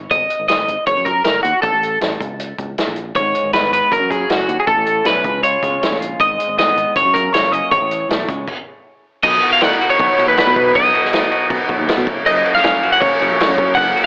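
Restless and cool, this indie rock cut from a longer piece puts a bright, compressed twelve-string electric guitar melody up front over a punchy vintage drum kit with dark cymbals and a round, dark picked bass, with an overdriven stack guitar riff, a very quiet clean twangy guitar and a soft, pure synth bell line entering at 3.2 seconds, a brief stop at 8.5 seconds, and a lo-fi home-cassette, AM radio character over the whole mix.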